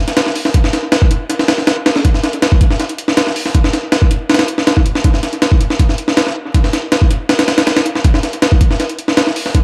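This drum and bass piece moves at 160 BPM in a straight 4/4, carrying a nostalgic, atmospheric mood through a short passage cut from a longer track. A jungle sampler-style drum kit of hi-hat, kick drum and snare drum sits up front from 0.1 to 9.6 seconds. Its sound is compressed and pitched up, with a thumpy kick and a high-tuned snare. Overdrive lends the kit a gritty edge, while small room ambience and analog delay add depth. The broader mix is echo-heavy, bathed in a moderate spring reverb with a 2.0-second decay and digital ambience. A layer of vinyl crackle deepens the aged, sampled character.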